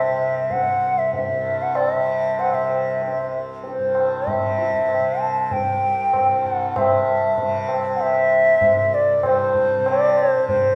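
A straight 4/4 pulse at 96 BPM carries this serene, radiant Hindustani classical excerpt in C raga yaman, where a pure, hollow bamboo bansuri with vibrato and tongued notes sits up front over a bright, softly plucked, buzzing and shimmering tanpura drone, while a high-tuned, ringing tabla enters at 0.5 seconds from a distant spot in a large room, all set in a wet recital hall reverb as the music moves into a new section at 6.8 seconds.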